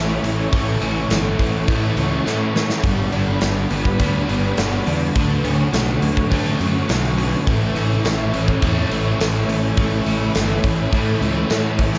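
Up front, a punchy, big-room rock drum kit enters at 0.2 s and plays a fill at 2.3 s, driving a hazy, wistful shoegaze and dream pop excerpt at 104 BPM in A mixolydian. Beneath the drums, a round, fuzzed-out picked bass anchors the music. Three background guitar riffs layer underneath: a bright, double-tracked cranked stack, a hollow-bodied overdriven semi-hollow with reverse reverb, and a dark fuzz with analog chorus. A very quiet, twangy, direct-recorded clean guitar plays arpeggios. A glassy, ethereal FM pad sustains chords through ensemble chorus and reverb. The chords move through A, Gmaj7, Dmaj7 and back to A, all inside small room ambience.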